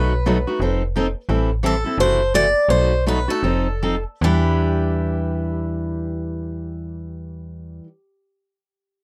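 Virtuosic and swinging, this short cut from a longer jazz manouche piece sets a bright, boxy picked swing guitar melody over a second steel-string acoustic guitar whose warm accompaniment carries a touch of finger squeak, with a snappy, metallic FM bass underneath. All three parts sit up front in a dry, close 1970s-style studio sound, and the music slows down between 1.3 and 4.2 seconds. Chords move from B7 through Am7 and a B7b9, settling on Em7 at 4.2 seconds as the second section begins.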